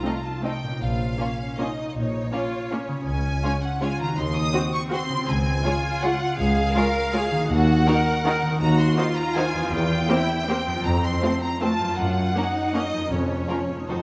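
Up front and bowed with vibrato, the double bass section anchors this dark, sweeping classical passage from 0.8 seconds, giving the low end a focused presence. Above it, a lush violin section carries the melody in a triple metre that pushes and pulls with rubato. A second violin line sits in the background with a smooth top, while a distant, even-toned viola section fills the middle with accompaniment and an intense cello section adds its own bowed voice. A concert harp rings through the texture with fingerpicked arpeggios, its tone warm and acoustic. The harmony moves through minor and diminished colours toward the end, where timpani struck with hard mallets sound briefly in the background at 13.1 seconds. A moderate scoring-stage reverb lends the ensemble a spacious bloom, and the passage is cut from a longer piece.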